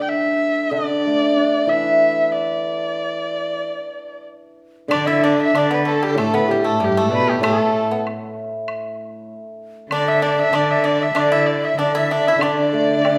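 A focused, up-front erhu carries the melody with vibrato and portamento over a shimmering, ringing hammered dulcimer in this graceful, festive excerpt of Chinese traditional chamber music, set at 96 BPM in 4/4 in the D zhi mode. At 4.9 seconds the ensemble fills out: a hollow, airy bamboo dizi with a buzzing membrane sits in the background, a bright, dry pipa adds percussive fingerpicked lines, an expressive, close cello sings with vibrato, and a close, dry woodblock sounds in the background behind them. A recital hall reverb gives the whole a graceful, roomy glow.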